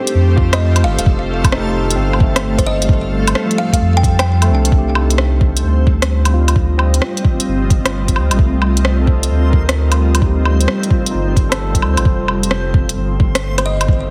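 A swung 4/4 groove at 131 BPM, with its 16ths pushed to 66% swing, drives this rainy, ghostly future garage excerpt in C dorian. An overdriven, soft electronic kick sits up front beside an organic electronic kit of smooth hi-hats, rim clicks and woodblock, both treated with overdrive and studio reverb, while a round, deep dub sub bass anchors the low end. A barky, bright tine electric piano through a combo amp carries the accompaniment with delay and sidechain pumping. Alongside it, a cloudy, blurred granular pad holds chords that move from F9 to Cm7 at 4.7 seconds and back to F9 at 12.1, and a reversed, detuned swelling texture drifts dreamily in the background. A woody, hollow kalimba with 12-bit sampler grit and delay plays the melody until 4.7 seconds, returning only briefly near the end. The mix has light digital ambience and a heavily compressed, radio-like sound.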